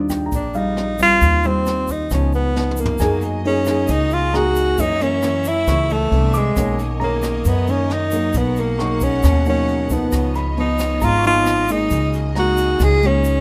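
Lightly reverberant and close, this sunny, sophisticated bossa nova excerpt in F# major at 135 BPM sets a breathy, up-front tenor saxophone melody with scooped notes over thumb-plucked nylon-string guitar, woody pizzicato upright bass, a brushed drum kit with a high-tuned snare and boomy kick, a grainy egg shaker and an intimate background piano with audible action noise, while a bright, bowed string section with vibrato enters at 3.0 seconds after a drum fill, as rich chords such as Ebmaj9, F#69 and G#m9/B pass by.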